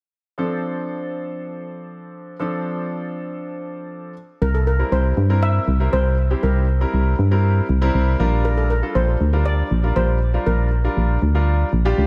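Set in a small room with light reverb, this driving, confident dance-pop excerpt opens on an intimate concert grand piano with audible action noise and subtle chorus, then at 4.4 seconds a punchy, round FM bass arrives up front alongside a shimmering steel pan lead, struck with medium rubber sticks and trailed by diffuse ambient delay, which falls away at 10.9 seconds.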